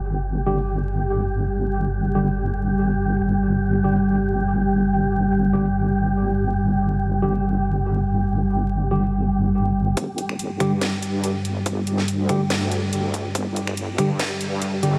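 A half-time 4/4 pulse at 142 BPM drives this cavernous, brooding stretch of deep dubstep, cut from a longer piece and tuned slightly flat to A4 = 438 Hz around a G5 chord. A dark analog pad with a deep, detuned sub-octave body holds sustained chords throughout, while a heavy, saturated wobble bass sits up front, ranging from G1 to G2 with chorus and a high-pass filter. A breathy, wind-like tuned noise layer drifts over the first 10 seconds, and from 0.5 seconds a barky tine electric piano fires clean stabs through a combo amp, shaded by lush chorus, a low-pass filter and dub echo. At 10.0 seconds a build-up begins as a tight electronic kick and a garage kit of finger snaps, hi-hat and cracking snare arrive, both tape-toned and set in small room ambience. The whole mix is dreamy and soaked in a huge ambient reverb, with vinyl crackle beneath.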